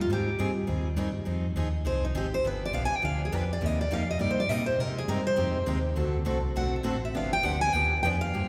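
Acoustic string swing in the jazz manouche style, this short excerpt moves at a brisk 204 BPM in 4/4 with a swung eighth-note feel and a bittersweet, swinging mood. A bright, picked dreadnought steel-string acoustic guitar carries the melody up front as a solo throughout, ranging from Eb4 to Ab5. Beneath it, a dark, round hollow-body short-scale electric bass, fingered and amped, sits up front from the start, while a boxy parlour steel-string guitar with fresh strings supplies picked accompaniment from 0.1 seconds. A very quiet archtop guitar joins the accompaniment at 3.6 seconds, its warm tone carrying a touch of finger squeak. The harmony cycles through Abmaj7, Fm7, G7, Cm7, Abmaj7, D7 and G7, and the whole ensemble is bathed in a wet church reverb with a long, resonant tail from a church or concert hall.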